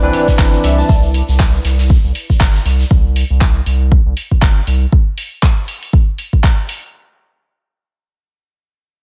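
Sunny and soulful, this short deep house excerpt at 119 BPM in C major opens on a Cmaj9 chord with brief barky tine electric piano stabs through a delay and an airy, breathy pad drifting in the background with chorus and phaser, while a round, dark analog bass and a tape-warm electronic kick sit up front, joined by a deep house kit's handclaps and hi-hat, a grainy, distant tube shaker, a very quiet big rock kit, a barely audible impact, and a glassy wavetable pluck with 12-bit sampler grit appearing at 0.6 seconds, all set in a digital ambience.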